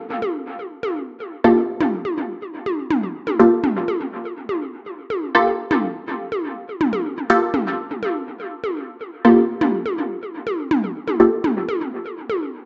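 Nocturnal and cavernous, this dub techno excerpt opens with overdriven, layered electronic toms up front from 0.2 seconds, trailed by dub echo. At 1.4 seconds a muted, detuned sawtooth chord stab on a Gm9 joins with a fast pluck, chorus, phaser and its own dub echo, a filter sweep moving through it until it stops at 11.4 seconds. A plate reverb soaks the mix in a dreamy, dark haze that rounds off the top end.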